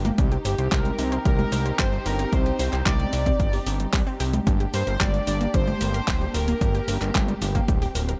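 This short cut from a longer italo disco track opens at once with several parts together. A dark, lush symphonic string section holds sustained chords, and an analog pluck spins arpeggios through chorus and digital delay in the background. A fat, detuned sawtooth bass sits up front, and a clean 12-bit drum machine plays overdriven cabasa, congas, handclaps and hi-hat. A dry, punchy electronic kick, also overdriven and up front, joins at 0.2 seconds, driving a straight 4/4 pulse at 112 BPM in G minor. At 0.5 seconds a bold, brassy analog synth brass line takes the melody, its mellow sub-octave tone coloured by chorus, delay and vibrato, while the harmony moves from C minor to G minor at 4.5 seconds. The mood is danceable and melodramatic, with woody, distant strings and a round, bright pluck, all in a close, dry mix with little reverb.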